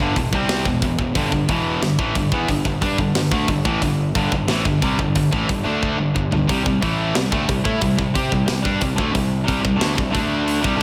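Heavy metal in a straight 4/4, dark and heavy, cut from a longer piece that runs about 10.8 seconds. Two distorted electric guitars carry the riff together, a bright, picked part up front with a slapback echo and a high-gain part sitting further back in the mix. A fuzzed, overdriven electric bass, punchy and amped, holds down the low end in the background. A tight acoustic metal kit enters at 0.2 seconds with hi-hat, kick, snare and toms, its sound mid-forward and rolled off at the top, and a drum fill arrives from 5.8 to 6.5 seconds. The harmony moves from Em to G5 and then lands on C5 at 6.5 seconds, all set in a lush hall reverb that gives a big arena sound.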